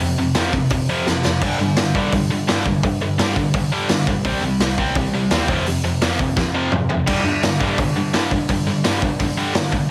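Heavily compressed with a radio-like quality and light reverb, this short punk rock excerpt sounds aggressive and raw. A bright, double-tracked distorted electric guitar drives a picked riff up front over power chords on F, G and a C minor turn. Beneath it, a dark, woody bowed cello holds the bass line from a distance, while a gritty, punchy garage drum kit in a small room pushes forward, with drum fills at 1.1 and 6.4 seconds.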